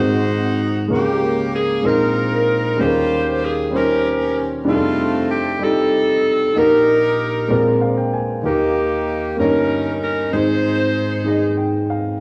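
An edgy, close-miked saxophone section carries a reverent, soulful gospel melody with light jazz vibrato over an intimate grand piano, its action noise audible as it moves through rich chords in Eb major at 64 BPM in a slow 6/8, adding fills at 7.5 and 11.3 seconds, all heard through worn, warbling old cassette tape with recital hall reverb in this brief cut from a longer piece.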